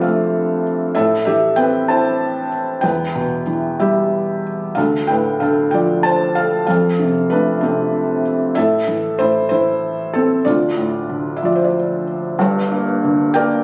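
A felt-muted upright piano plays alone and up front, its mellow, intimate tone touched by audible action noise, in a short cut from a longer classical piece in D dorian, moving in a rubato 6/8 at 63 BPM. The dark, wistful harmony drifts from F through Am, Em and Dm before settling toward Gm at 12.4 seconds, where a new section begins, with the piano ranging from G1 to A5. Light reverb surrounds the close, room-captured sound.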